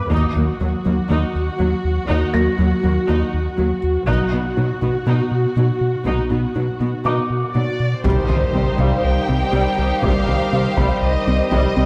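A straight 4/4 pulse at 121 BPM drives this brooding, futuristic excerpt of a hybrid orchestral and electronic film score in C harmonic minor, where a round, deep analog bass riff and glassy, crystalline wavetable pluck arpeggios with chorus and delay sit under an up-front viola section, focused cellos, distant double basses until 6.3 s, and a felt-muted upright piano with audible action noise drifting high in the background. Very quiet, band-limited taiko hits with hard sticks mark the build-up, moving from Ebm to B, before the violins take the melody at 7.5 s. At 8.0 s a very quiet electronic impact lands on Cm as a second violin line and bright, tight trombone chords join, all bathed in a wet concert hall reverb.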